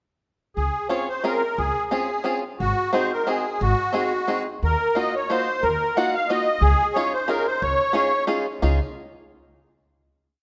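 A straight 3/4 pulse drives this short, nostalgic and whirling musette waltz: a reedy, shimmering, vintage accordion in musette tuning carries a motif-based melody in sentence phrases from 0.6 s, a woody, thumpy pizzicato upright bass plays root and fifth on the main beats, and a bright, twangy bluegrass banjo played with fingerpicks adds percussive backbeat chords in close voicing, all heard in a moderate concert hall reverb before the piece settles on a final chord at 8.6 s.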